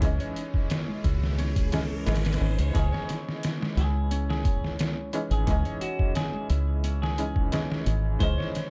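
A dark, dry production frames this brooding, hypnotic trip hop excerpt at 88 BPM in C# minor, where a gritty, pitched-down sampler-style kit with a thumpy kick and a round, foam-muted dub bass sit up front beneath a felt-muted upright piano with audible action noise, tremolo and tape echo, ringing fingerpicked Celtic harp arpeggios, and an electronic riser that gives way at 2.8 seconds to a twangy, scooped clean electric guitar melody, all resting on a single C#madd9 chord.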